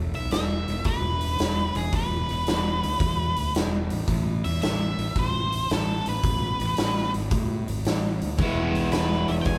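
A large live room with a moderate studio reverb frames this brooding, gritty blues rock and southern rock fragment, cut from a longer piece, at 111 BPM in a swung 4/4. Growly fuzz bass and a big, natural acoustic kit with a punchy kick open together, joined almost at once by a dark octave-fuzz lead guitar carrying the melody up front, moving from an E5 power chord into a chordless stretch at 4.1 seconds. At 8.4 seconds a bright, double-tracked overdriven semi-hollow guitar with spring reverb enters with a riff on an E chord.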